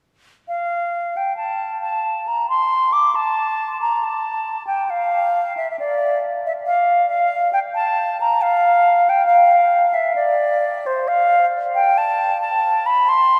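In a rubato 3/4 around 68 BPM, a concert flute plays this flowing, solemn baroque-style fantasia alone from 0.5 to 13.4 seconds, moving between C5 and D6 and tuned to A4 = 439 Hz. Its pure, straight tone and crisp attack sit up front, while a deep cathedral reverb with a 5.3-second decay lets each phrase hang in the air. This short passage is taken from a longer piece.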